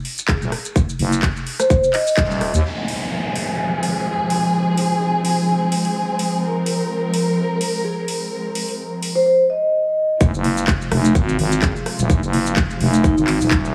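Bass house at 127 BPM in F phrygian, bouncy and gritty, with a light 16th-note swing, cut from a longer piece. A house drum kit of handclaps, rim click, shaker and metallic, tape-tinged hi-hats runs throughout, while a punchy kick enters at 0.3 seconds and a growling, thick FM bass pumping against the sidechain follows at 0.4 seconds, both under a mellow vibraphone played with soft mallets, its ringing tone carried on tape echo. After a band accent at 2.2 seconds, the kick drops out at 2.3 seconds, and bass and vibraphone fall away at 2.6 seconds as a lush, bowed symphonic string section enters on sustained chords, low-pass filtered and pumping, joined briefly by an electronic downlifter. The vibraphone returns over the strings, and at 10.2 seconds the drop brings back the up-front kick and bass for the final stretch. The mix has a heavily compressed, radio-like sound set in a moderate digital hall reverb.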